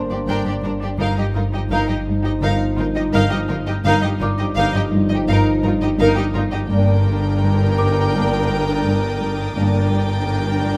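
Close, detailed and lightly reverberant, this uneasy suspense-film cue in G minor at 84 BPM sets a rich, vibrato-laden chamber string section, with an expressive violin melody over a smooth second violin line, distant viola accompaniment and cello and double bass holding the low G, against a dark, woody studio cello riff, mellow French horn chords, a warbling vintage analog drone with chorus and a delicate, slightly out-of-tune music box, before a faint, focused high violin texture enters at 6.7 s as the harmony returns to G minor.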